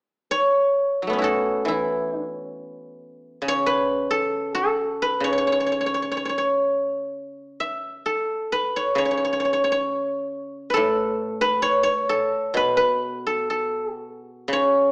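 Elegant and serene, this short passage cut from a longer piece of Chinese traditional music features a single guzheng playing alone. The tempo sits around 60-69 BPM in 2/4, though the pulse is handled with a free, rubato feel, and the music rests in an A gong mode with tuning set to A4 = 441 Hz. The acoustic guzheng, played with fingerpicks, sounds bright and silvery, its strings ringing out as it ranges from A2 up to E5 between 0.3 and 14.9 seconds. It sits up front in a moderately large studio space whose moderate reverb, lasting about 1.2 seconds, surrounds each note. The recording carries a live-in-the-room quality with a small speaker sound.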